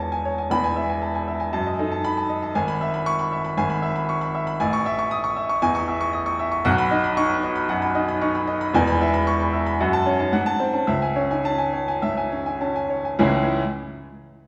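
Rubato phrasing in four moves freely through this passionate, stormy virtuoso piano study, a short cut from a longer classical piece that slows from 7.7 seconds to 13.2 seconds. A solo baby grand carries everything, its warm, open tone and long sustain sitting up front while ranging from deep bass to bright upper notes. A reverberant recital hall, heard from further back in the room, surrounds the piano until it stops at 13.6 seconds.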